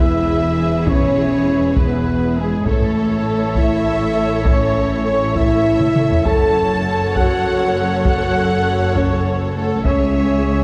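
In a 6/8 with a straight feel, this heroic, majestic cinematic cue sets mellow French horns holding sustained chords at the front, with a close, hard-stick taiko ensemble entering at 0.9 s and breaking into a fill around 5.8 s. Bowed strings fill out the harmony as it moves from E to A, F#m and C#m: a lush violin melody and a distant second violin line sit in the background above an intense viola accompaniment, a smooth string section sustaining chords, and expressive, soft-attack cellos with deep double basses carrying the bass. A roomy trumpet section adds stabs from afar, all in a dark production with a moderate concert hall reverb, cut from a longer piece.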